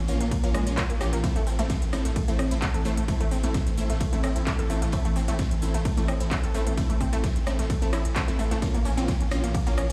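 Lightly reverberant and intense, this peak-time techno excerpt drives on an overdriven, up-front electronic kick and a deep, round sine sub bass, joined by a techno kit of handclaps, smooth hats, ride cymbal and rim clicks, a very quiet, dark and gritty low-tuned acoustic kit with hi-hat and fat snare, a warbling, detuned unison pluck riff and aggressive, bright rave stabs, both sidechain-pumped and echoed by analog delay, while a very quiet, eerie metallic drone hangs beneath.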